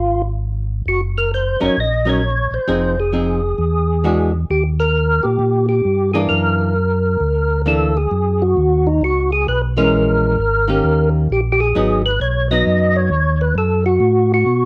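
Percussive, fat-toned tonewheel organ carries the melody over a dark, round, lightly overdriven organ bass from the very start of this soulful, bluesy soul jazz organ trio excerpt at 132 BPM with a swung 4/4 feel, both organs up front with slow rotary speaker and chorus vibrato, the lead showing key click and a plate reverb, while a clean, picked hollow-body archtop guitar adds accompaniment from 1.6 s to 13.1 s as the harmony settles into B major at 8.1 s.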